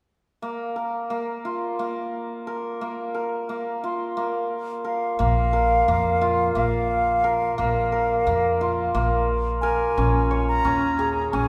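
Bathed in a wet concert-hall reverb, this pensive yet urgent contemporary chamber piece in 7/8 opens with a bright, shimmering hammered dulcimer spinning ringing arpeggios up front. At 4.9 seconds a pure wooden flute takes up the melody high in its range, with vibrato, a crisp attack and lifted highs. A woody, thumpy pizzicato upright bass joins at 5.2 seconds, giving this fragment of a longer work a firm low footing.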